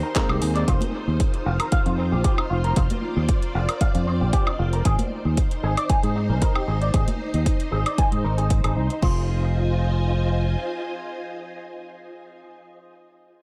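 A groovy, sensual nu-disco excerpt at 115 BPM in 4/4, with a light swing on the sixteenths and a home in F dorian, is driven by a punchy, up-front electronic kick and a layered pop drum kit of metallic hi-hats, handclaps, woodblock and crash cymbal, both playing from 0.2 to 9.1 seconds in a dry studio ambience. A fingered electric bass sits forward in the mix with a direct, amped punch, while ringing, high-tuned congas struck with hard hands add live-room color through the middle of the passage. Over this, a bright, twangy electric guitar through an envelope filter plays a clean, picked, compressed riff with lush chorus and tape echo until 9.3 seconds. A vintage string machine holds sawtooth chords with a sub octave, slow attack and long release, its ensemble chorus and sidechain pumping carrying it past the point where the guitar drops out. A dark, mellow grand piano with 12-bit sampler grit appears only briefly in the background at the start. 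The harmony moves from Ab to F and back before settling on Fm7 at 9.0 seconds, within an echo-heavy mix that has little reverb.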